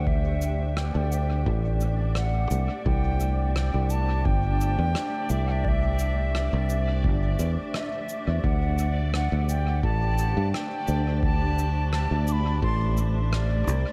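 A light reverb and small-room ambience frame this hazy, spacious ambient dub excerpt at 86 BPM, where an airy, close-miked wooden flute carries an expressive, tongued melody through dub echo over a blurred, detuned granular cloud pad and a bubbling, resonant sawtooth texture with chorus. A growly, punchy fingered electric bass sits up front beside a deep analog electronic kick re-recorded in a large room, while cabasa and rim click in a big room trail dub echo. The harmony moves from D9sus4 to C69 at 2.9 seconds and back to D9sus4 at 8.4 seconds.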